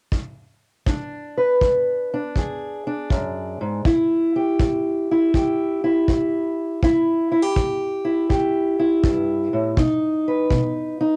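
A tight kick drum, played with brushes in a small room, opens this short cut from a longer acoustic country blues piece, sitting up front from the first moment. At 0.9 seconds a fingerpicked steel-string parlour guitar joins, carrying the melody across a range from low E2 to B4 with a dark, boxy tone placed close to the listener. The mood is soulful and gritty, with an unhurried swung feel in four. The harmony moves from E7 to A5 at 3.9 seconds and lands on B at 9.8 seconds before the guitar stops at 11.2 seconds. Both instruments carry the grainy character of a home cassette recording, and the dry, close sound adds to the intimate, lived-in atmosphere.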